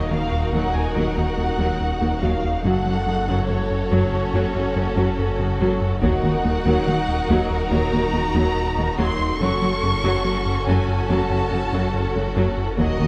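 This is a tense, relentless cinematic film score blending orchestra and electronics, moving at 71 BPM in 4/4 through Eb minor and Gb minor chords in a short cut from a longer piece. A distant, lush violin section carries the melody over a second violin line with a soft attack, an intense viola accompaniment, and a smooth, even cello section in the background, while a round, nasal analog bass riff and a swirling, saturated detuned saw bass with phaser thicken the low end. A very quiet, close and dry taiko ensemble struck with hard sticks enters at 6.0 seconds and returns briefly at 12.8 seconds, all set in a moderate scoring-stage reverb.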